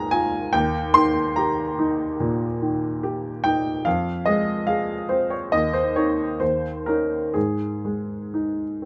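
Rubato phrasing stretches a 4/4 pulse that moves between 60 and 74 BPM, giving this romantic character piece for solo piano a breathing, unhurried feel. A clear baby grand carries everything on its own from 0.0 to 8.9 seconds, ranging from Eb2 up to C6 with a natural, up-front tone and short sustain. The mood is passionate yet hopeful, with harmony moving from Db to Eb, then settling on Fm at 3.9 seconds before passing through Cm/Eb, Eb5 and Ab5. Close, detailed microphones capture the instrument intimately, while light reverb adds a touch of space. The passage is cut from a longer piece and presents a single section of its unfolding statement.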